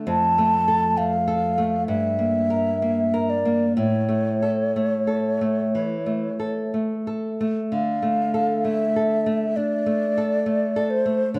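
Rubato 4/4 carries this yearning, elegiac romantic duo, cut from a longer piece, in which an airy, hollow concert flute with vibrato and tongued notes sings the melody up front over a small-sounding, fingerpicked nylon-string guitar with fresh strings, moving through F, Gm and A before settling on Dm at 7.7 seconds, all bathed in the wet reverb of a recital hall.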